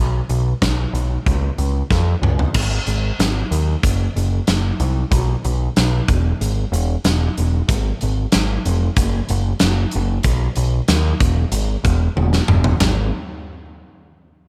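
A straight 4/4 classic rock groove, driving and confident, opens on a growling picked electric bass with round, punchy overdrive, joined at 0.3 seconds by a big acoustic rock drum kit with a fat snare, tight kick and rolled-off top, both parts up front in a nearly dry mix, with drum fills at 1.9 and 12.2 seconds leading into new sections.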